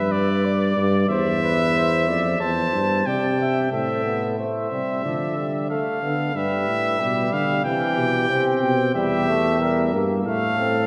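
Set in a straight 4/4 at 92 BPM, this solemn, contemplative classical excerpt of an imitative brass canzona places a brilliant, lightly vibrato-tinged trumpet melody up front over a mellow, smooth-topped flugelhorn second line and a present, soft-edged tuba bass, with a clear, distant trombone accompaniment entering at 3.7 seconds, all bathed in a church reverb with a 2.9-second decay.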